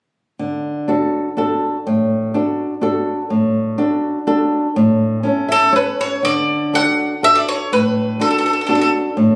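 A warm, fingerpicked flamenco guitar opens this lively, romantic fragment of Italian folk in three at 0.4 seconds, with a guitar fill at 5.3 seconds before a bright, picked bowl-back mandolin on double strings takes up the melody at 5.5 seconds, both instruments sitting up front in a moderate recital-hall reverb captured on a phone in the room.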